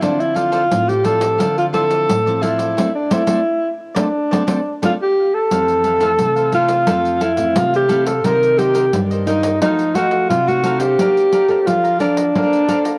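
A breathy alto saxophone leads this nostalgic, bittersweet samba and choro fragment at 88 BPM in 4/4, with all four parts sounding together from the start. It carries the melody in a mellow jazz style, with vibrato, scooped notes and a soft attack, over a bright, crisp picked cavaquinho, a fingerpicked classical nylon-string guitar with fresh strings, and a jingly pandeiro heard in a small room. The saxophone sits up front as the solo voice yet sounds distant and roomy, its line trailed by tape echo, while the saxophone, cavaquinho and guitar share cassette-tape colouring and plate reverb. The band plays an accent from 2.8 s to 5.5 s, and at 5.5 s the key shifts from D minor to F major, with the harmony moving through Fmaj7, Cm9, F7b9 and Bbmaj9. It is a home recording on cassette, set in a moderate studio reverb.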